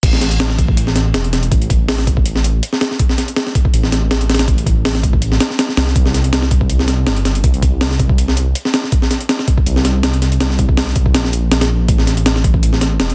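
Drum and bass with a jungle edge, this dark, atmospheric fragment of a longer piece sits at 162 BPM in 4/4, with a slight swing on the sixteenths. A breakbeat drum kit with a sampler-style character runs for the whole 13.1 seconds, its pitched-up, gritty hits placed up front: a thumpy kick, a medium-tuned snare, hi-hat and crash cymbal, all compressed. Beneath it, a detuned sawtooth bass built from unison voices with a sine layer rumbles between E1 and C2, its deep, beating tone saturated and sustained after a fast attack. The whole stretch plays as a drop, with both parts present from the first second to the last. There is little reverb, and the dense, heavily limited master keeps the sound close and forceful.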